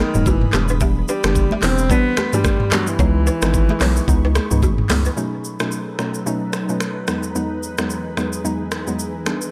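Sunny and joyful, this swung afrobeats cut sets a breathy, distant alto saxophone melody with tape echo over a hollow, bouncy square-wave pluck, an ethereal airy pad, a woody, buzzing balafon riff in the background, a deep saturated sub bass and very quiet bright congas, driven by an up-front electronic afro-pop kit with knocking kick and metallic hats; the saxophone drops out at 4.6 seconds and the balafon, bass and congas fall away by 5.1 seconds, so the pluck, pad and drums carry the rest.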